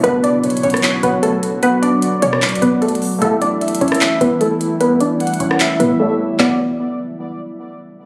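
A warbly, dusty pluck sits up front with the melody, its dark, wave-folded tone softened by chorus, delay and a low-pass filter sweep that runs until 6.4 seconds. This is a hard-hitting yet melancholic trap excerpt in a half-time feel, moving from Bmadd9 to A7 and back. Beneath it, a felt-muted upright piano adds soft, intimate accompaniment, while a nostalgic tape-like pad holds slow-blooming sustained chords bathed in its own reverb. At 0.4 seconds a velvety synth lead enters with a smooth, high second line carrying vibrato, chorus and delay. The trap kit brings a woody snare, crisp hats, handclaps and rim clicks, with a punchy, tight 808-style bass sitting in the background, and a brief break arrives at 6.0 seconds. The whole mix has a phone-in-the-room character with club-like reverb and a digital ambience.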